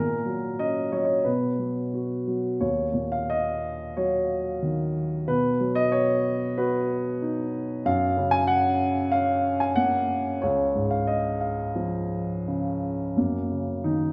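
Classical solo piano in a lyrical, sunny vein, this short fragment of a longer piece features a dark, mellow baby grand heard up front with smooth, vintage tone and long sustain, played with rubato across a range from C#2 to G#5 in a resonant recital hall whose wet reverb lingers around the chords as they move from F#/A# through D#m7 and B before settling on F#6 at 13.2 seconds.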